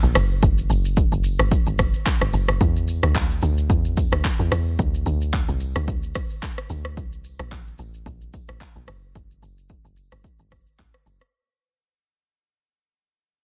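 Late-night and soulful, this amapiano excerpt comes from a drop section with a fade-out, where a woody log drum bass sits up front with fast, percussive attacks that decay into a mellow tone over a noise layer. A layered electronic deep house kit drives the swung groove with a punchy kick, smooth hi-hats, handclaps, rim clicks and shaker. The mix is dry, with a dense, heavily limited modern master.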